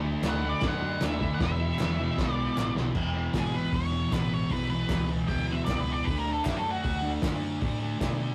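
A straight 4/4 beat at 154 BPM drives this raw, swaggering garage rock excerpt. Up front, a cloth-damped drum kit sounds thuddy and muffled, with a fat snare, tight kick and dark, rolled-off cymbals. A group handclap adds a hollow, dry snap in the background. A thick, double-tracked fuzz guitar carries the riff over a round, amped picked bass, moving from D to E5 and back to D. After a drum fill, an octave-fuzz lead guitar takes a distorted solo in a higher register from 3.0 seconds. The rough rehearsal-room recording has a warm saturation and a moderate studio reverb.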